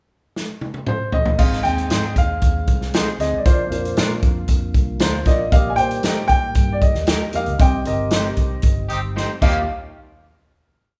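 A punchy, up-front country drum kit kicks off this short, joyful 1960s-style soul piece at 116 BPM in Eb major, with a fill leading into a pre-chorus where a warm concert grand carries a motif-based melody over woody upright piano chords, a round, foam-muted electric bass line with chromatic approach notes, twangy slightly broken-up guitar chops on the backbeat with spring reverb, and a mellow, lightly overdriven tonewheel organ pad swirling with fast rotary speaker in the background, before a clear, tight horn section punches in at 8.9 seconds alongside a band accent and a final drum fill that lands on the closing hit at 9.7 seconds, all in a live-sounding large studio room.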